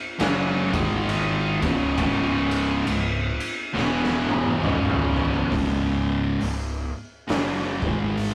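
A rough rehearsal-room recording with warm saturation and wet small-room ambience carries this sludgy, heavy stoner and doom metal excerpt in C# minor at a swung 68 BPM, where a double-tracked fuzz guitar up front and a bright, scooped high-gain guitar grind out the riff over C#5, G#5 and E5 chords, an overdriven fingered fuzz bass drives underneath, and an oversized low-tuned drum kit, dark and gritty with a punchy kick and rolled-off top, plays a fill from 3.7 to 5.5 seconds, after which the high-gain guitar drops out.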